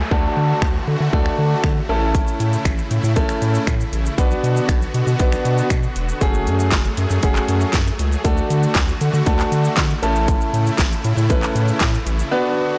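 The recording sounds blown-out and overdriven, set in light reverb and a digital ambience. This confident, driving dance-pop piece moves at 118 BPM in a straight 4/4, tuned to A4 = 444 Hz, and cycles through D, A, Bm and F#madd9 before returning to D and A. Up front, a punchy, layered electronic pop drum kit combines kick, a deep snare with soft clipping, metallic hi-hat, shaker, handclaps and finger snaps. A round analog bass with a dark, sine-like tone holds the low end and pumps with the sidechain. A clear concert grand piano plays accompaniment, also pumping, beside huge, detuned supersaw chords that sustain bright and lush beneath it. A background electronic downlifter sounds only in the opening 2.1 seconds, and the music falls into a silent gap at 12.3 seconds.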